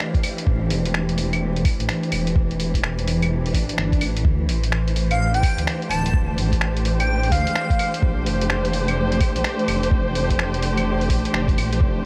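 A light reverb and a layer of vinyl crackle frame this melancholic, nocturnal slice of future garage, cut from a longer piece and moving at 127 BPM in 4/4 with a 63% swing on the sixteenths. A dark chamber string section sits up front from the start, its bowed ensemble chords carrying vibrato, a soft attack and a smooth top while pumping against the sidechain. Underneath, a muffled, thumpy electronic kick anchors the groove alongside a compressed, lo-fi sampler-style kit of claves, finger snaps and hi-hat. A deep, rumbling detuned saw bass enters at 0.5 seconds, saturated and beating, and pumps along with the strings through the harmony of A7sus4, Dm9 and Bbmaj9#11. A faint electronic swell sounds in the background just before an airy, dreamy lead appears at 5.1 seconds, its soft, bright unison tone coloured by chorus, cassette tape wear and tape echo until it ends at 8.0 seconds.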